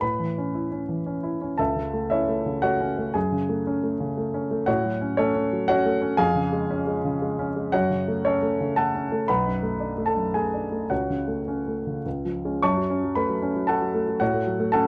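A dark production with light reverb places a warm, present grand piano up front, its notes carrying a short sustain. This agitated, stormy fragment of a virtuoso classical piano study moves in a rubato 3/4 between 103 and 121 BPM, the solo piano ranging from B1 to C#6. It opens in A major and turns to F# minor from 6.2 s, with a new section arriving at 12.6 s before the piano stops at 14.9 s.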